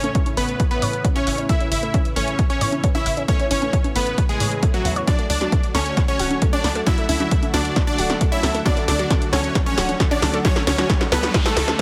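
Uplifting and euphoric, this piece of trance runs at 134 BPM in a straight 4/4, building steadily throughout. An up-front, detuned supersaw stab carries the melody with a punchy, sustained unison tone and tape echo. Beneath it, a silky, string-like analog pad holds sustained chords through ensemble chorus, while a round analog pluck sits in the background playing arpeggios under a filter sweep, with chorus and tape echo. A tight, dark sequencer bass drives the low end, and a tape-warm kick drum re-recorded in a small room anchors the groove alongside an analog drum machine's congas, hi-hat and snare, with the hats and congas pumping with sidechain. The harmony moves from A to Dmaj7 at 5.1 seconds, where a drum fill begins, and a very quiet riser and noise sweep enters at 9.7 seconds under light digital reverb.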